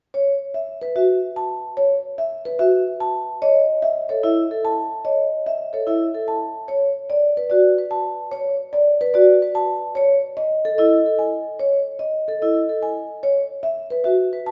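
Classical minimalist pattern music in 3/4 at 110 BPM and in B mixolydian, propulsive and hypnotic, cut from a longer piece. A mellow, round marimba played with soft mallets carries the melody up front, while a metallic, ringing vibraphone with medium mallets and its motor off plays arpeggios with a boxy small-room colour; both sound together from 0.1 to 14.5 seconds. The harmony moves through Bsus4, Esus4, D6 and A before returning to Bsus4, all set in a wet large studio reverb that places the listener further back in the room with a dulled top end.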